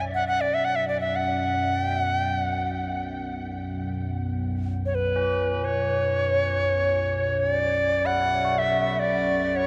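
A reedy cedar flute in the Native American style and a deep, dark ambient pad open together at 0.0 seconds, setting a meditative, spacious mood in free time and B minor. The flute carries the melody up front between B4 and F#5, its airy wooden tone marked by a chiff on tongued notes, gentle vibrato and a trailing delay. Alongside it, the pad, also up front, holds a low drone from B1 to F#2, built from detuned sawtooth and sine layers with a sub octave, slow attack, long release, chorus and a moving notch that keeps its moody body shifting. At 5.2 seconds, soft tubular bells enter as texture in the range C#4 to F#4, sounding solemn and mellow with a metallic ring and a vintage, band-limited character. Everything sits in a huge, wet reverb with a 9.1-second tail, and this cut from a longer piece ends at 9.7 seconds.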